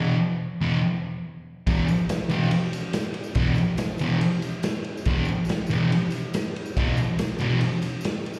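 Heard through a club PA with a short, moderate reverb, this raw, rowdy garage rock excerpt at 141 BPM opens on a thick, double-tracked fuzz guitar riff carrying slapback echo on an E5 chord, joined at 1.7 seconds by an up-front garage kit with a punchy kick, ride and a rolled-off top, plus a jingly tambourine tucked in the background, before the guitar stops at 7.6 seconds.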